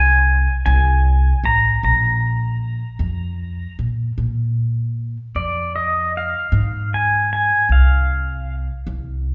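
Rocking gently in a straight 6/8 at 51 dotted-quarter beats per minute, this heartfelt, hopeful acoustic folk-pop ballad fragment moves through chords such as Ab/C, Ammaj7, Bb5 and Fm/Ab. Up front, a clean, twangy pedal steel guitar carries the melody with fingerpicks, slide and volume swells until 8.6 seconds, while a woody, pizzicato upright bass on gut strings thumps beneath it until 9.3 seconds. The pair sit in a wet concert-hall reverb, lending the performance the airy bloom of a church or concert hall.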